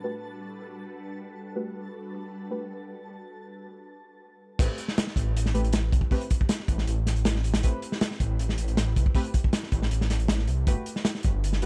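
Up front at 4.6 s, a thick, menacing detuned saw bass and a crunchy breakbeat drum kit with punchy kick and dark cymbals drop into this dark, atmospheric drum and bass excerpt at 158 BPM in A dorian, where an ethereal airy pad with phaser, chorus and sampler grit sustains and deep mellow chord stabs with dub echo punctuate Gmaj9 and Am9 chords throughout, while a twinkling granular texture sparkles only until 3.1 s during the filter-swept opening.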